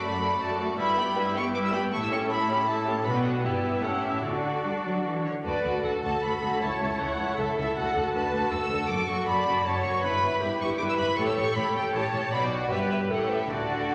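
Spirited and lively, this quick classical-period movement for string orchestra moves at 157 BPM in 3/4 with a rubato feel, set in D major and cut from a longer piece. A rich, focused first violin section carries the melody up front with vibrato and a lush bowed tone, while a smooth, even second violin section weaves a second line beneath it. The violas supply accompaniment with a similarly rich, vibrato-laden sound. The cellos anchor the bass with a clear, intense tone and light vibrato, joined at 0.8 seconds by a double bass section that sits in the background. The harmony cycles through familiar cadential turns toward A7 and back to D, and the opening phrase is restated from 5.4 seconds. A wet recital hall reverb wraps the ensemble in a spacious, resonant acoustic.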